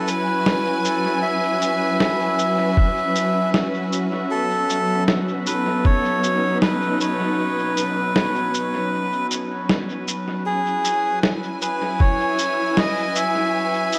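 A reedy, breathy melodica carries the melody through this spacious, meditative ambient dub excerpt, its line trailing dub echo over lush, woody bowed strings that hold sustained chords with vibrato. Muffled, tape-colored electronic shaker and snare, also carrying dub echo, sit up front from 0.1 s on a lightly swung feel. A thumpy, compressed electronic kick drops in from 2.8 s to 6.0 s and briefly again at 12.0 s, with a break from 7.4 s to 10.5 s, and an echo chamber reverb gives the mix a roomy depth.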